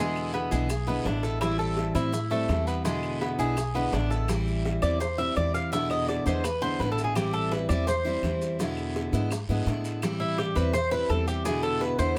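With light reverb, this nostalgic, danceable excerpt of Cuban son and guajira puts a bright, full-bodied picked steel-string acoustic guitar and a metallic, double-strung Cuban tres up front over woody pizzicato upright bass, while tight, high-tuned bongos, raspy guiro and grainy maracas sit in the background and very quiet claves tick close by, the tres moving from arpeggios into a solo at 4.3 s over an alternating E7 and Am7 vamp.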